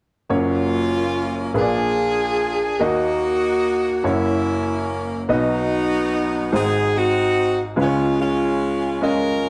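From 0.3 s a close-miked, jazz-style saxophone section with vibrato carries the melody over an intimate baby grand piano, its action noise audible, in this jubilant, hopeful gospel fragment in F# major, moving in a slow 6/8 at 48 BPM through a progression from F# to a closing C#, all set in a moderate large-studio reverb.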